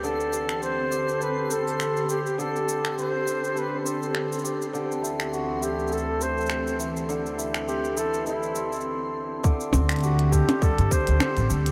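Playful and pastoral, this dreamy folktronica fragment drifts through a reverb-soaked space as a mellow, distant flugelhorn with vibrato carries the melody over ringing, shimmering hammered dulcimer arpeggios, both touched with analog delay. Beneath them a warbling, lo-fi, detuned pad holds sustained chords with chorus and phaser and a filter sweep, while a sparse, clicky kit of cabasa, finger snaps, hi-hat and percussion blips ticks along with a gentle swing, and a faint twinkling granular texture sparkles in the background until 8.9 seconds. At 9.4 seconds a tight, tape-warmed electronic kick arrives up front, joined at 9.7 seconds by a woody, thumpy pizzicato upright bass.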